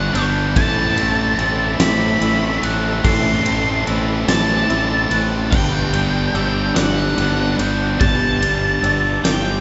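In a slow, straight 6/8 at 48 BPM, this soaring, cinematic post-rock fragment in G major moves from Gmaj7 to Amadd9 and settles on G at 5.5 s. An up-front, round fuzz bass and a huge arena drum kit with a fat snare, boomy kick and bright cymbals anchor a fuzzy octave-fuzz lead guitar melody, while crunchy and tight distorted guitar riffs, a twangy twelve-string electric guitar's arpeggios, sparkling glockenspiel arpeggios and a very quiet, lush string section (which stops at 8.0 s) all sit back in a wet recital-hall reverb.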